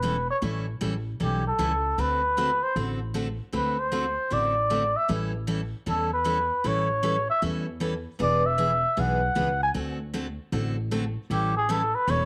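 Playful and cheerful, this western swing country excerpt features a cup-muted trumpet soloing with a veiled, mellow tone and light vibrato over a bright, full-bodied picked steel-string acoustic guitar and a woody, thumpy pizzicato upright bass, all bathed in a wet spring reverb as the chords move from A9 through D7 and E9.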